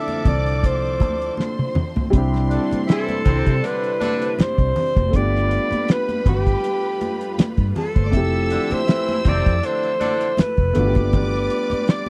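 A dry, close 1970s-style studio sound with light reverb frames this lush, romantic soul excerpt at 80 BPM in C major, its sixteenths gently swung. A vibrato-rich alto saxophone carries the melody up front while a bowed violin section traces a smooth second line, a mellow, boxy grand piano accompanies, a very quiet, warbling string machine holds sustained chords, and a roomy horn section adds jazz-style stabs until 10.3 s. Underneath, a cloth-damped drum kit with a fat snare and tight kick sits up front and plays a fill from 1.4 to 2.1 s, ringing high-tuned congas sit in the background, and a foam-muted, round electric bass anchors the progression from Dm7 through Cmaj9, G7 and Fmaj7.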